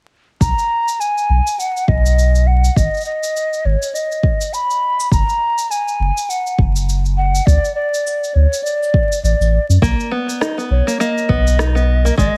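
A deep, tape-warm electronic kick and a cabasa-and-rim-click pattern, both re-recorded in a large room, set a lightly swung 102 BPM groove in 4/4 beneath a round sine sub bass, driving this delicate, pastoral folktronica piece in B major through a Bmaj7, G#m, F#, D5 progression. Up front, a mellow, hollow jazz flute with airy tone, vibrato, a crisp chiff and tape echo carries the melody over a bed of vinyl crackle. At 9.8 s a twangy, plunky fingerpicked open-back banjo enters with arpeggios for the closing moments.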